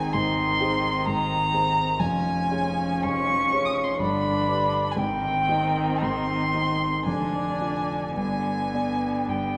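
Spacious scoring-stage reverb with a 2.0 second decay wraps this short extract from a slow romantic movement for piano quartet in 3/4. It moves with a free rubato pulse between 52 and 65 BPM, and the mood is lyrical and serene. Up front, a single muted violin sings the melody high in its register, its con sordino tone veiled and shaded with vibrato. Beside it, a dark grand piano with audible action noise and a mellow, vintage character supplies the accompaniment across a broad span. A muted viola adds quiet inner support with light vibrato, while a distant muted cello carries a second line with soft attacks and gentle portamento. All four players sound through the full 9.6 seconds over harmony that passes from Ab through Db/F and G to Abmaj7, Ddim/F and back to G.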